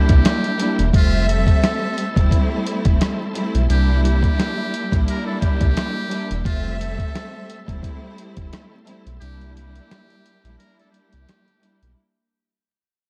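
Boom-bap hip-hop at 87 BPM with a soulful, nostalgic swing, built on a gritty, compressed sampler-style drum kit with a thumpy kick and a deep, round analog bass up front, while lush bowed strings with expressive vibrato carry the accompaniment, a buzzy metal-muted trumpet sings a jazz-style melody through a delay, and a very quiet, lightly overdriven tonewheel organ with fast rotary holds sustained chords, set in a dark production with vinyl crackle as the passage fades throughout and drops into a break at 9.2 seconds.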